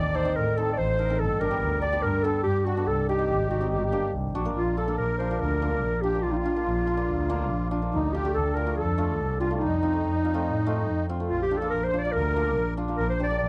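A clarinet in a classical style carries the melody of this soulful, bittersweet klezmer piece at 142 BPM in 4/4, cut from a longer performance and moving from G harmonic minor into Bb major at 4.6 seconds. Beneath it, a reedy, band-limited musette accordion plays a shimmering second line, a bright hammered dulcimer rings out the accompaniment, and an up-front bowed double bass adds rich, expressive vibrato with soft attacks and portamento. The sound is dry and close, like a 1970s studio recording.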